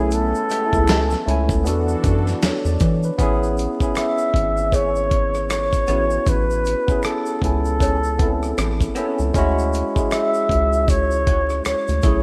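A laid-back 78 BPM groove in 4/4 with a swung sixteenth feel drives this soulful, smooth neo-soul R&B excerpt in A major, built on a gritty, compressed sampler-style drum kit with a thumpy kick and rim clicks, a rubbery, bouncy square bass, and faint tube shaker and finger snaps in the background. Up front, a breathy flugelhorn carries the jazz-style melody with light vibrato, scooped notes and a slapback echo over a bright, barky tine electric piano, while a detuned analog pad with chorus holds chords only until 3.2 seconds and a slightly broken-up electric guitar with wah slips in at 0.5 seconds as a second line. The harmony moves from suspended chords to a lush Amaj9 and then Dmaj9#11 at 9.3 seconds, all wrapped in a rough home-demo mix with light digital ambience, vinyl crackle and lossy artefacts.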